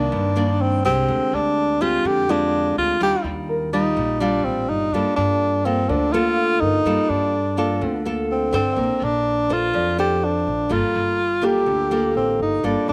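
Smooth and wistful, this 125 BPM bossa nova in G minor sets a breathy, up-front tenor saxophone playing a mellow, vibrato-laced melody with scooped notes over full-bodied fingerpicked nylon-string guitar with slapback echo and a woody pizzicato upright bass, while a dark baby grand piano with audible action noise and slapback echo joins quietly in the background at 2.3 s, heard in a dry outdoor setting as a passage from a longer piece.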